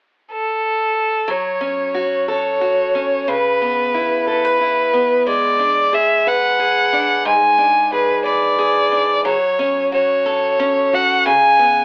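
Aching and melancholic, this brief pop fragment in F# minor moves at 60 BPM in a straight 6/8, opening with a rich, smooth bowed violin carrying the melody up front with vibrato and a cassette-tape tint from 0.3 seconds, joined at 1.3 seconds by a bright picked acoustic archtop guitar accompaniment with audible finger squeak, the whole heard through a wet small-room reverb with a home-cassette, telephone-like sound as the chords pass through F#m, C#m7 and G#dim before closing toward a C#7 chord with its third omitted.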